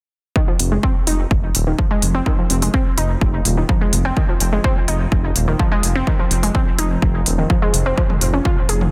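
Melodic techno at 126 BPM in F minor, dramatic and driving, this brief cut from a longer piece opens at 0.4 seconds with an overdriven, heavy electronic kick up front and a warbly, dusty pluck spinning lo-fi arpeggios through chorus and dub echo. At 0.6 seconds a techno kit of smooth hi-hats and toms joins, pumping against the kick, while a menacing, detuned saw bass with a filter swell and saturated grit churns low. From 1.3 seconds a very quiet vintage analog drone with resonant pulse-width shimmer hums beneath. The harmony sits on F7 before shifting to Db near 8.0 seconds, all within a dense, heavily limited master with light reverb.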